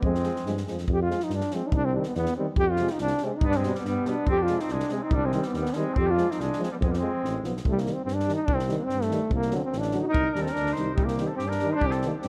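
A mellow, smooth-topped trombone carries the melody up front with light vibrato and a soft attack, over a close-miked tuba bass, two euphoniums in the background and a dry, punchy cocktail kit with a high-tuned snare, setting a restless, virtuosic Balkan brass band groove at 143 BPM in 2/4. A distant, roomy trumpet plays a second line in short stretches, returning at 3.4 s and again at 10.1 s, while the harmony moves through chords in F dorian sharp4 before shifting to C dorian sharp4 at 7.6 s. The production is dark and warm with light reverb, the parts are classical in style, and the passage is cut from a longer piece.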